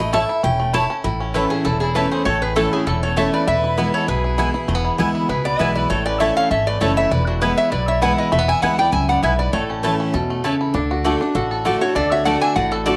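Driving and joyful, this bluegrass excerpt from a longer piece moves at a brisk 198 BPM in 4/4 with a light swing, set in A major. A bright, full-bodied dreadnought acoustic guitar sits up front, picked with fresh strings and an audible finger squeak, and takes a short solo spot in the opening second. Twangy, percussive banjo arpeggios, woody double-string mandolin stabs and a growly, thumpy pizzicato upright bass fill out the rhythm section from the start. At 1.3 seconds a nasal, metallic lap resonator guitar, played with slide and fingerpicks, takes the melody up front, while a clear, earthy fiddle with light vibrato traces a second line in the background. The harmony moves between A and E before shifting to D at 10.7 seconds, all in a moderate studio reverb with some lossy compression artefacts.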